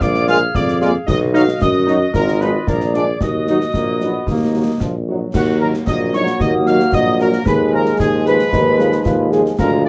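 The recording has a warm production with light reverb, and this short cut from a longer piece carries a resolute, martial mood in a straight two-beat march for wind band in military style. A clear trumpet section, distant and roomy, carries the melody, while a pure, tongued piccolo with expressive vibrato and a woodwind section in the background play second lines. Up front, a vintage-toned solo tuba holds the bass with light vibrato, and a concert snare drum, concert bass drum and clash cymbals with dark cymbals play with the acoustic sound of a small room. At 0.3 seconds, a mellow French horn section adds background accompaniment, and a bright trombone section sustains chords. At 5.9 seconds, a solo euphonium with a soft attack enters with its own second line.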